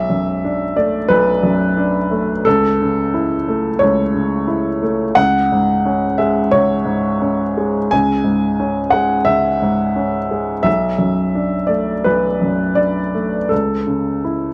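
Neoclassical minimalist piano in B dorian, melancholic and wistful, moving at 88 BPM in 4/4 with a rubato feel across this 14.5-second excerpt from a longer piece. A lone upright piano carries everything, ranging from B1 to G#5 with a clear, woody, intimate tone, long sustain and audible action noise, sitting up front in a dry, close 1970s-style studio sound with light reverb. The harmony drifts from Bm7 through A/C# to a long-held C#m before returning to Bm7 at 10.7 seconds and closing on A/C#.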